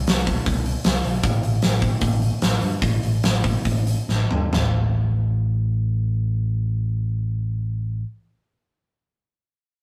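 A rough rehearsal-room recording with warm saturation and a wet small-room reverb gives this short hard rock cut in A minor a heavy, menacing feel, in straight 4/4 somewhere between 131 and 156 BPM. An up-front acoustic rock kit with a fat snare, punchy kick, hi-hat and toms drives alongside a bright, growly picked electric bass as the tempo slows from 1.2 seconds, and the drums close with a fill at 4.1 seconds. From 4.6 seconds the amped bass carries the second section alone until it stops at 8.0 seconds.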